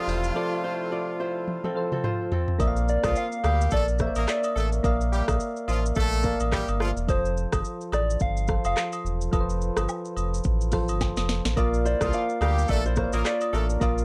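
Afrobeats at 107 BPM in 4/4 with a swung sixteenth-note feel, this sunny, joyful excerpt sits on F and Bb chords and is cut from a longer piece. Soft, round electric-piano-like synth keys with chorus, tremolo and plate reverb carry the accompaniment throughout, while a fingerpicked, ringing kora riff with digital delay opens the passage and returns from 11.6 seconds. A deep, full sub bass with an octave and an up-front electronic afro-pop drum kit, with a deep kick, sharp snare, handclaps, rim clicks, shaker and toms, give the groove its weight. The kit is colored by vintage 12-bit sampler grit and rolls through a fill just before the second section arrives at 2.6 seconds, with another fill later at 11.0 seconds. There the agogo bells and woodblock join with close, acoustic egg shaker and group handclap, and from 2.9 seconds a gentle, warbling FM synth lead with a bright, keys-like strike takes the melody. 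A clear horn section with vibrato adds an ensemble second line in two stretches, bathed in plate reverb, and the whole mix sits in a light reverb.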